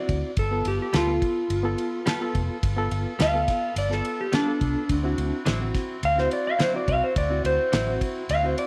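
Laid-back and rollicking, this straight-eighth soul blues excerpt at 106 BPM puts a dark, clean lap steel guitar up front with a slide solo over slapback echo, backed by a barky, reedy electric piano with tremolo, a round, foam-muted fingered bass, a dry 70s drum kit with fat snare, tight kick and ride cymbal, a tight horn section holding sustained chords in the background, and compressed electric guitar stabs with lush chorus entering at 0.9 seconds, all moving from G9 to D9 in light studio reverb.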